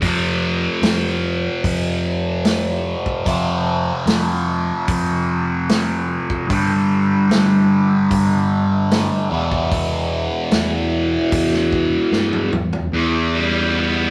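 Psychedelic rock at a slow 74 BPM, trippy and hazy, where an up-front, double-tracked fuzz guitar with distortion and phaser carries the riff over a round, dark fingered electric bass and a vintage drum kit with a punchy kick and rolled-off top that plays a fill from 12.1 seconds before dropping out at 12.9, leaving guitar and bass on an E minor chord in a rough rehearsal-room recording with light reverb, cut from a longer piece.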